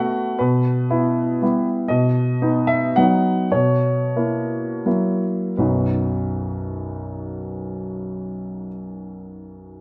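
Classical romantic triple-time dance for solo piano in B major, graceful and rustic in mood, set in 3/4 with dotted rhythms and a flexible rubato feel. The tempo moves between 75 and 127 BPM, and the music slows from 1.2 to 5.6 seconds before a new section begins at 5.6 seconds. A baby grand piano plays alone throughout, spanning B1 to F#5 with a clear, open tone, long sustain and an up-front presence. The harmony moves from Em over B to B, then F#7 over B, and settles back on B at 5.6 seconds. A moderate recital hall reverb surrounds the instrument, and the tuning sits slightly high at A4 = 445 Hz in this short passage cut from a longer piece.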